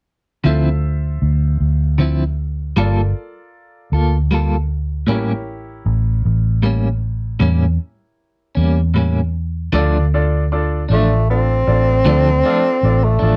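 A slow, brooding blues in 12/8 opens at 0.4 s with bright upright piano, clean electric guitar and electric bass entering together over a soulful progression of Dm9, Gm9 and A7b9 at 52 BPM. The piano's brilliant, woody tone has a short sustain and a polished sheen. The guitar is picked and compressed, sitting up front with a tremolo effect. Underneath, the vintage fingered bass is foam-muted, dark and round, with a prominent amped tone. At 9.7 s the music settles into D minor, and at 10.9 s a breathy tenor saxophone enters up front with a mellow, jazz-style solo voice, a smooth top and vibrato. The whole piece has the intimate feel of a home cassette recording with light reverb, and it is cut from a longer piece.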